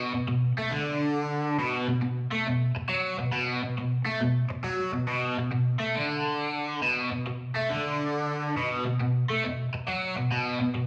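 Brooding and gritty, this rock excerpt moves at 137 BPM in 4/4 with a swung eighth-note feel, settled in B minor. A cranked stack guitar carries the whole passage as a solo from 0.0 to 10.9 seconds, staying in a low register between B2 and A3. Its tone is bright and overdriven, picked and double-tracked, sitting up front with a phaser coloring the distortion. The sound comes across as a band playing live in one room, bathed in a large studio reverb with a 1.3-second decay. It is cut from a longer piece, so the brief passage feels like a fragment of something bigger.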